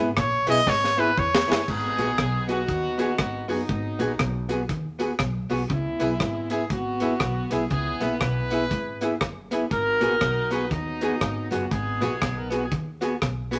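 A brilliant trumpet with scooped notes opens this driving, energetic ska excerpt at 120 BPM in G# minor, soloing briefly over a drum fill before a horn section with light vibrato takes the melody from 1.7 s to 12.7 s, all carried by a deep reggae drum kit with a high-tuned snare, tight kick and dub echo, a dark hollow-body archtop guitar up front, a picked clean electric guitar riff in the background, a woody pizzicato upright bass, a faint jingly tambourine and moderate studio reverb over C#m7 and G#m7 chords.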